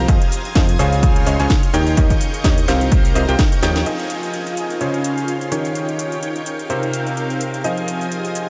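Soaked in a huge, dreamy reverb, this energetic, soulful piano house excerpt at 127 BPM in F minor puts a clear, woody upright piano riff with tape echo up front over shimmering string-machine violin chords and a blurred granular cloud pad in the background, all three pumping to the sidechain, while a house kit with cracking snare, metallic hats and shaker plays throughout, a punchy overdriven kick stops at 3.5 seconds, and a funky, plucky analog bass with tube saturation stops at 3.8 seconds.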